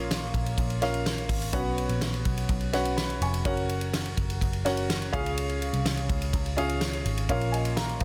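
Piano-driven pop with an anthemic, warm mood, this cut from a longer piece sets an up-front baby grand piano over a dark, round, foam-muted picked electric bass and a natural country drum kit with a fat snare and punchy kick, moving through Bbm, Cbsus2, Gb and Db in light small-room reverb under a dense, heavily limited modern master.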